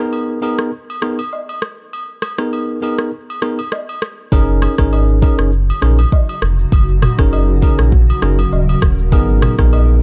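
An afrobeats excerpt in F# major at 100 BPM opens with a bell-like tine electric piano playing a bright, clean accompaniment, joined almost at once by agogo bells and woodblock with an acoustic, live-room feel that also carries maracas and group handclaps. From 0.6 seconds an electronic afro-pop drum kit sits up front with a deep kick, rim clicks, shaker and toms, set in a gently swung 16th-note groove. At 4.3 seconds the harmony moves from G#madd9 to F#6 as a deep, full sub bass with octave enters up front, its sine and triangle tone sustained under the band. A granular cloud pad arrives at 5.8 seconds, a blurred, evolving bed of sustained chords with its own built-in reverb and a slow attack. The production is dark and close with little reverb elsewhere, giving the romantic, joyful mood an intimate glow before the chord returns to G#madd9 near the end.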